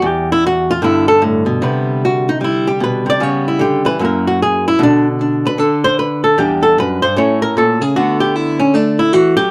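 Solo jazz at a swinging 152 BPM in 4/4, this smoky fragment from a longer piece features a clean, compressed hollow-body archtop guitar, picked up front with a dark electric tone, ranging from E2 to D5 over changes such as Em, C#m7b5, F#7 and Bm before settling on D69 at 8.0 seconds, all within a moderate studio ambience.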